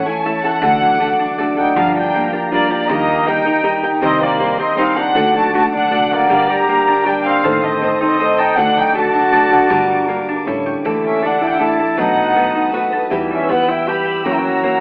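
The recording has a telephone-like sound, with the band playing live in one room under a wet studio reverb. This is a proud, festive mariachi piece in a straight three-beat metre, cut from a longer performance, moving from its opening part into a new section at 10.8 s. A violin section carries the melody up front with a nasal, reedy, gut-string tone in a period style, while a second, lush violin section holds sustained chords in the background with a bowed, vibrato-rich tone and a smooth top. A fingerpicked nylon-string guitar, bright and full-bodied, provides the accompaniment, and an up-front concert harp rolls ringing arpeggios. A woody pizzicato upright bass sits in the background from 0.6 s, and a distant, roomy trumpet enters at 1.6 s with a warm second line in a classical style.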